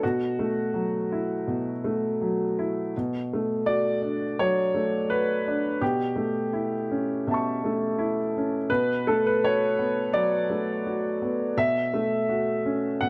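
Neoclassical minimalist piano in B minor, reflective and melancholic, unfolds at a rubato 83 BPM in 4/4 as a solo grand piano, clear and worn with an open, long-sustaining tone placed up front, moves through F#m7/B, Bm7, A7/B and back across B2 to C#6, captured dry and close in a detailed sound for this 13.1-second excerpt of a longer piece.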